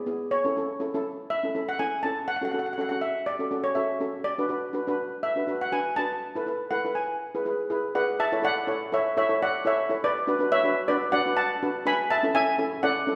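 A wet recital-hall reverb surrounds this sunny, bouncy calypso fragment in A major, moving at 122 BPM with a light swing on the sixteenths. Up front, a shimmering lead steel pan struck with hard rubber sticks carries the melody with a boxy edge, while a mellow, band-limited double-seconds pan played with soft rubber sticks supplies a soft, vintage-toned accompaniment from 0.1 seconds. The chords move through A, F#m, Bm and a suspended E before a shorter second section from 8.2 seconds returns through Bm to A.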